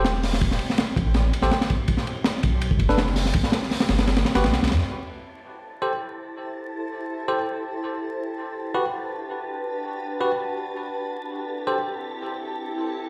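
A crunchy, punchy breakbeat kit with a high-tuned snare and dark cymbals drives this raw, frenetic jungle cut alongside a thick, saturated sub bass while a bell-like tine electric piano stabs through sampler grit and dub echo, until both the drums and bass drop out at 4.8 seconds, leaving the keys to be joined at 5.3 seconds by a breathy wind-like tuned noise texture and, from 6.0 seconds, a cloudy, blurred granular pad that drifts beneath them amid vinyl crackle and a big, bare-room reverb.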